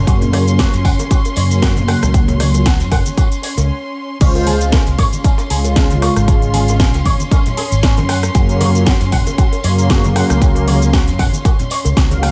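A feel-good, groovy nu-disco excerpt at 116 BPM in 4/4, with a light swing on the sixteenths and a home key of Db major, moving from a Gb chord to Dbmaj7 at 4.2 seconds and back to Gb at 8.1 seconds. A short break just before 4.2 seconds gives way to a drop that carries through the rest of the cut. Up front, a punchy, tape-warm electronic kick drives the groove, joined by a house drum kit with a cracking snare, metallic hats, rim clicks, cabasa and crash, while tambourine, congas and bongos sit in the background with soft, saturated hand playing. A fingered electric bass runs through an envelope filter, bright and amped, and a clean, twangy electric guitar riff, also envelope-filtered and scooped, shimmers with lush chorus and dub echo. Filling the middle is a smooth sawtooth analog pad, detuned and mellow with chorus and dub echo, while a distant, bowed studio violin section holds sustained chords with vibrato. 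The strings, bass and pad all pump with sidechain compression, and the mix stays dry with little reverb.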